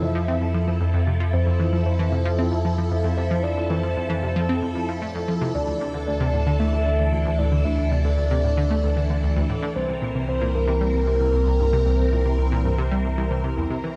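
Driven by a straight 4/4 pulse at 114 BPM, this cosmic, expansive stretch of ambient sequencer-driven space music in F major sets a bright, detuned analog pluck riff and a deep, round analog bass beneath swirling, vintage chords from a phased string machine and a soft octave-layered synth lead with vibrato singing between Bb4 and E5 until 13.4 seconds, all moving through Fmaj7, Dsus2 and C7 in a dark, warm production bathed in moderate plate reverb.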